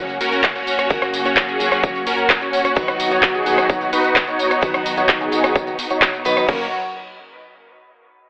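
Uplifting and triumphant, this short festival progressive house passage puts huge, detuned supersaw chords up front, swept through a low-pass filter across the first 6.5 seconds with dub echo. Beneath them sit a bright, picked steel-string acoustic guitar, also echoed, and a smooth bowed studio string section with vibrato, each pulsing with sidechain pumping. An overdriven big-room kit of crash, handclaps, hi-hat, rim click and tambourine arrives at 0.1 seconds alongside a barely audible electronic impact, and a punchy, layered kick drum lands at 0.4 seconds, while a thick, saturated sub bass hums deep in the background, all of it framed by a telephone-like tone and moderate room reverb.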